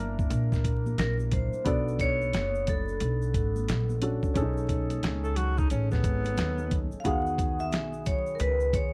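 A dry, close recording in a 1970s studio style, dusted with vinyl crackle, sets a smooth, cool jazz-hop mood in this hip hop excerpt at 89 BPM in 4/4, with a 63% swing on the 16ths. A gritty, compressed sampler-style soul kit sits up front with a thumpy kick, a medium-tuned snare and hi-hat, tape-warm and re-recorded in a large room, while a woody pizzicato upright bass on steel strings shares the foreground. A warm baby grand piano with long sustain plays accompaniment through a rootless C9, then Bm9, B13 and Emaj9 chords, and a tube shaker and congas add a faint live-room layer in the background. From 1.0 seconds a metallic, ringing vibraphone, struck with medium mallets and colored by a slow motor vibrato, carries an airy melody close to the listener. Between 5.2 and 6.9 seconds a breathy tenor saxophone drifts in as a distant, whispered second line, with mellow subtone, a soft attack, vibrato and scooped notes giving it an intimate, roomy jazz feel.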